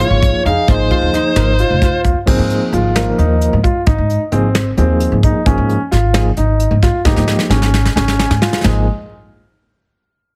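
Intricate and bright, this short cut of progressive instrumental band music moves in a straight 7/8 at 264 BPM in eighths, in A-flat major, with a heavily compressed radio sound, light reverb and small-room ambience. An up-front, biting overdriven lead guitar carries the melody alongside a breathy, whispered flugelhorn with vibrato and scooped notes in the background, both falling away at 2.0 seconds. A gritty, barky tine electric piano with fast tremolo, a polished grand piano playing arpeggios, a woody pizzicato upright bass and a soft brushed kit continue, with a drum fill from 7.1 seconds and an electric piano fill at 8.0 seconds as the harmony moves from Dbadd9/Ab and Ab6 toward Ab5.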